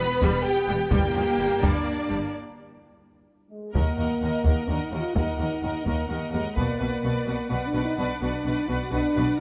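Relentless and dramatic, this epic orchestral film-score passage in 3/4 sets a lush, vibrato-laden violin melody and a second violin line over intense violas, a dark French horn section holding sustained chords, and a bass foundation of focused double basses and smooth cellos set in the background. Hard-stick taiko drums drive the music from close up, while timpani struck with hard mallets add a brief articulate accent between 0.9 and 1.6 s. A break arrives at 2.3 s, with a taiko fill from 3.0 s, and the second section begins at 3.7 s, all in light reverb with close, detailed microphones, cut from a longer piece.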